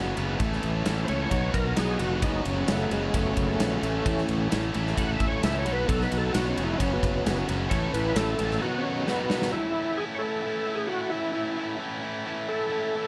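Swaggering and sunny, this classic rock excerpt drives along at 132 BPM in a straight 4/4, cut from a longer piece. An overdriven tonewheel organ carries the melody from 1.0 seconds, its thick, gritty tone turning through a slow rotary speaker with chorus vibrato, and it takes a solo over the opening stretch. Beneath it, a bright distorted electric guitar plays the riff alongside a sludgy second guitar set in the background, while a growly fuzz bass sits up front until 8.6 seconds. A big rock drum kit with a punchy kick, medium-tuned snare and bright ride cymbal fills a big room and drops a fill just before 9.5 seconds. There, the boxy, very quiet plugged-in acoustic guitar and the sludgy guitar stop, leaving the organ and the riffing electric guitar to carry a new section over light reverb as the chords cycle through A, B and F#sus4.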